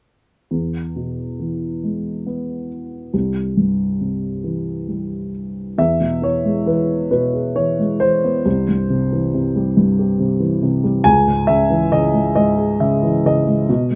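Peaceful and calm, this short excerpt from a longer classical piece offers lyrical solo piano at a gentle 68 BPM in 3/4, played with a flexible, rubato feel. A dark baby grand carries the whole performance from 0.5 to 14.0 seconds, ranging from C2 up to G#5, its mellow, vintage tone sitting up front with a smooth, intimate character. Close, detailed microphones capture the instrument so near that the noise of its action is audible. The harmony moves between E and C before settling on C#m near the close, with a second section beginning around 5.8 seconds. A light reverb adds just a touch of space around the piano.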